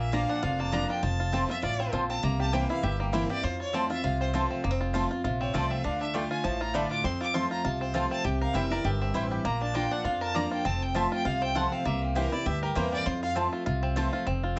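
A rich, earthy bowed fiddle carries a virtuosic solo from the start until 13.3 seconds, set somewhat distant over a driving, swung bluegrass band in which a woody, growly pizzicato upright bass and a twangy, percussive fingerpicked banjo sit up front, joined by a bright, full-bodied jumbo acoustic guitar with audible finger squeak and round, double-strung mandolin stabs, the whole short excerpt heard in a small, moderately reverberant room with a soft, rolled-off top end.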